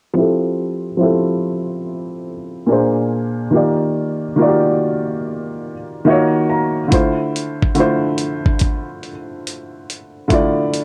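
A felt-muted upright piano accompanies this mellow, nostalgic lo-fi hip hop excerpt, its soft, boxy tone carrying audible action noise and short sustain through cassette tape coloring and a filter sweep, moving from Fmaj7 through Bb7 and Ebmaj7 to Ebm7 and Dm7 with a swung feel. After a piano fill at 5.7 seconds, a dusty soul sampler-style drum kit enters at 6.9 seconds with compressed, gritty hi-hat and a thumpy kick, sitting up front beside the piano. A moderate studio reverb and tape character give the whole piece an intimate, lived-in sound.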